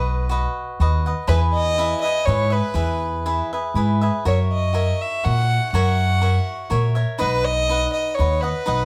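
A rich, reedy gut-string violin carries the melody of this romantic, festive Mexican folk mariachi piece in 3/4 from the first moment, its bowed line touched with slapback echo and plate reverb, over bright, crisp picked cavaquinho and woody pizzicato upright bass, heard from further back in a wet studio room as the chords move from B through E and F#7 back to B.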